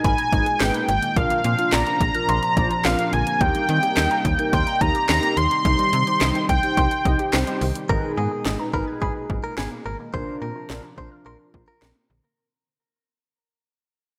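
Heard from the first moment, a thick, detuned unison lead with tape echo sings the melody over punchy house drums with handclaps and gated reverb, a snappy slap-like FM bass, mellow chorused synth brass, a shimmering pulse-width pad and a warbly, lo-fi dusty pluck in this upbeat, wistful synth-pop excerpt at 107 BPM, with chords moving through Abmadd9, Bbadd9, Eb6 and Cm. The lead stops at 7.6 s, a twangy, clean electric guitar adds a second line from 7.9 s, and the music fades out as Abmadd9 and Bbadd9 return.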